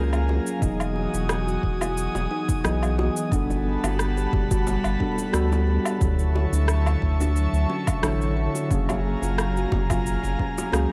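Sunset chillout at a relaxed 89 BPM in E major, smooth and unhurried with a light 16th-note swing, built on a round, deep analog bass sitting up front beneath a mellow tine electric piano carrying a filter sweep and tape echo, plus an airy, breathy pad with chorus holding sustained chords. A woody kalimba plucks arpeggios with tape echo in the background, while overdriven electronic woodblock, cabasa and rim click mingle with a punchy, overdriven electronic kick and very quiet, low-tuned bongos played with soft hands. The chords move through F#maj9, Emaj9, Gmaj9 and Dmaj9 under a dark production with light reverb, and the kick drops out at 10.7 seconds near the end of this cut from a longer piece.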